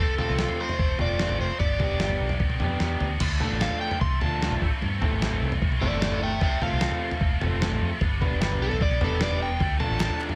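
Opening on a dark, overdriven semi-hollow guitar melody over a bright, scooped high-gain guitar riff with chorus and delay, a round foam-muted bass, a lo-fi garage guitar with spring reverb and a gritty, thumpy sampler-style drum kit up front, this cool, restless indie rock clip in D dorian at 150 BPM turns on a drum fill at 2.8 seconds into an overdriven guitar solo from 3.2 seconds, with a hollow group handclap sounding faintly in the background at 10.0 seconds.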